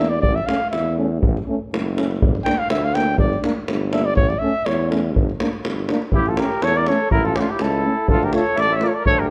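A punchy, vintage-toned trumpet solos up front for the first 6.1 seconds of this fiery, bittersweet Balkan brass band cut at 122 BPM in a lightly swung 2/4, shifting between A and G minor over a deep, distant davul, a roomy tuba bass with vibrato, and a soft-attack French horn and clear euphonium in the background, before a mellow second trumpet with light vibrato takes up the melody at 6.1 seconds as the harmony moves on to D minor in a lightly reverberant space.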